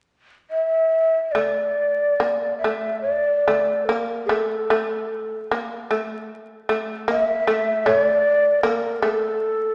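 Austere and calm, this short passage of Japanese chamber music, cut from a longer piece, moves in a free, rubato feel. A breathy, mellow shakuhachi carries the melody from 0.5 seconds, its hollow, straight tone shaped by tongued attacks with a touch of chiff and softened highs, sitting up front in the mix. At 1.3 seconds a bright, buzzing shamisen joins with a plectrum-plucked second line, its fretless, percussive voice also placed close to the listener. The two play together until the end at 9.7 seconds. A recital hall reverb lends the sound a lingering wetness, while a layer of vinyl crackle and a dulled top end give the recording an aged character.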